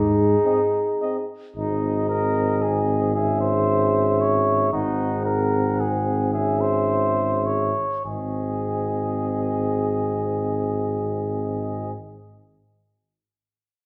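Triumphant and warm, this classical brass quintet excerpt moves in a rubato 3/4 at 100-116 BPM in Ab major, easing into a slowdown from 3.9 to 8.1 seconds over Ab, Dbm/Ab and Ab7 harmonies before settling back on Ab. An up-front tuba with light vibrato anchors the bass beside a vintage-toned flugelhorn on the second line and a mellow French horn in the background. At 0.4 seconds a smooth-topped cornet enters with the melody, joined by a soft-attack trombone with vibrato, all set in a wet recital hall.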